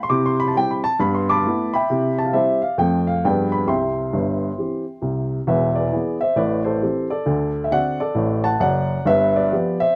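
Set up front in a moderate studio room, a dark, woody upright piano carries this playful, exuberant stride jazz excerpt, cut from a longer piece. Swinging in four and ranging from E1 to D6, the lone piano moves through G69, F and G7b9 harmonies before turning at 5.5 seconds to a new passage built on E7, Am7, D7 and G7.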